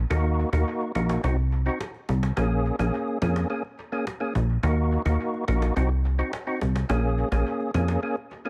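Hypnotic and sultry, this dancehall excerpt rides a punchy, wave-folded analog bass with a quick filter pluck, set up front beside a fat, lightly overdriven tonewheel organ whose percussive tone carries key click, chorus vibrato and a fast rotary speaker. A faint, woody cajon with a band-limited, vintage tone sits further back under dub echo. The harmony cycles through Ebm, Cdim and Bbm7 twice in a small room with an echo-heavy mix.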